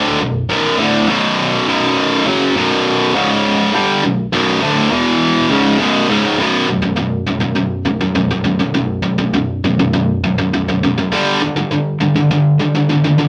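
Metal in a relentless, aggressive mood, cut from a longer piece, with a straight four-beat pulse. A tight, bright electric guitar carries the whole recording alone, picked and distorted, double-tracked and placed up front, ranging from B1 up to G3. The opening passage moves from B minor through C#5 and back, then on to E5 and B5 power chords. At 6.4 s a second section begins, holding on B5 until a shift to G5 at 11.1 s. A moderate studio reverb and the sound of players performing live together in one room give the guitar a solid, immediate presence until it ends at 13.3 s.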